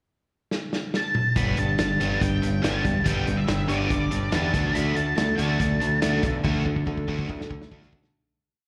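A growling, overdriven bass drives eighth notes up front from 1.4 seconds in this confident, swaggering classic rock piece, alongside a dark octave-fuzz lead guitar that comes in at 1.0 seconds playing short motifs with slapback echo, a crunchy overdriven guitar with spring reverb and slapback echo, and a bright, very quiet distorted guitar, both palm-muting eighth notes, over a full-bodied steel-string acoustic strumming open chords in the background and a muffled, lo-fi vintage drum kit that enters with a fill at 0.5 seconds and fills again as the piece fades out from 6.4 seconds, all heard as a live gig through the venue's sound system with recital hall reverb.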